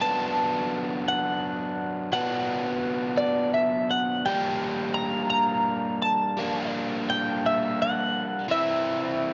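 A clean, compressed twelve-string electric guitar carries the jangly melody through spring reverb, giving this carefree rock fragment its shimmer in an unhurried 6/8 at 57 BPM in dotted quarters. Beneath it, a biting, double-tracked overdriven guitar sits up front with a picked low riff as the harmony moves from Bm to Gm at 4.3 seconds and lands on C/E at 8.5 seconds. Both guitars carry the soft haze of a home cassette recording, its sound capped at 7.5 kHz, in a moderate booth ambience.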